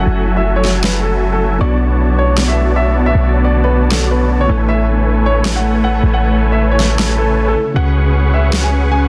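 Future bass in a dreamy, lush half-time swing, cut from a longer piece, where a smooth vintage grand piano carries the melody with 12-bit sampler grit and dub echo over huge, bright detuned supersaw chords through a low-pass filter, a worn, slightly out-of-tune tine electric piano with overdrive and delay in the background, a very quiet shimmering, ethereal granular pad, and a deep, boomy 808-style bass up front, while a huge, layered electronic snare re-recorded in a small room plays from 0.6 to 8.6 seconds, all in a dense, heavily limited modern mix with light reverb.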